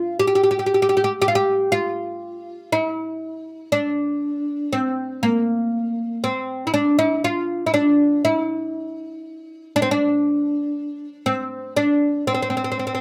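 A steady 10/8 pulse at 119 BPM counted in eighths, with a straight feel, carries this melancholic, soulful Turkish excerpt in D makam ussak, tuned to A4 = 438 Hz. A solo fretless oud plays the melody throughout its 13 seconds, ranging from Bb3 to G4, its plectrum-plucked double strings sounding woody and deep. Recorded outdoors with a light reverb, the oud sits up front.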